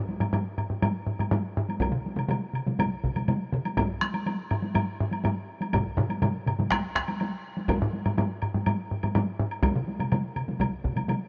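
Solo taiko drums open this driving, powerful passage of Japanese traditional ensemble drumming, struck with hard sticks and given a compressed, saturated edge. A second solo taiko part, played with heavy sticks and processed the same way, sits up front and joins almost at once alongside a woody woodblock, and this heavier drum drops out at 9.5 seconds. At about 1.8 seconds, two taiko ensemble parts come in, both beaten with hard sticks in a small room, with one of them placed up front. The feel is a straight 4/4, and a light reverb gives the acoustic drums a shared space. The passage is cut from a longer piece.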